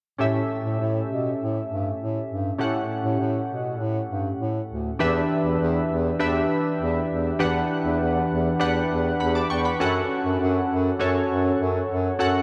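Analog keys and a bass clarinet sound together from 0.2 seconds in this nostalgic, dramatic slice of 1980s-style pop, set at 100 BPM in a straight 4/4 and in E dorian. The keys carry the accompaniment up front. Their round, warm blend of detuned square and sawtooth waves has an airy noise layer, a filter sweep and shimmering chorus, with a fast attack that decays across a span from A2 to D6. Beneath them, the mellow bass clarinet holds the bass between D2 and B2, a classical-style voice that sounds distant and roomy even while placed up front. The harmony moves from A7 to Em7 at 5.0 seconds and on to F#m at 9.8 seconds. A cathedral reverb with a 6.2-second tail soaks the dreamy mix until this cut from a longer piece ends.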